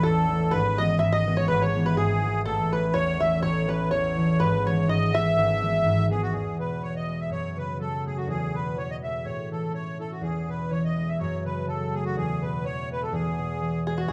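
Rollicking and lively, this brief cut from a longer Celtic folk polka moves at 124 BPM in a swung 2/4 in E major. A sweet, reedy accordion carries the melody up front with light tremolo tuning and plate reverb. Its partner is a twangy, percussive fingerpicked banjo playing a second line in the background, which drops out at 6.1 seconds and returns at 13.9 seconds. A ringing concert harp supplies up-front accompaniment, and the whole ensemble sits back in a small, reverberant room.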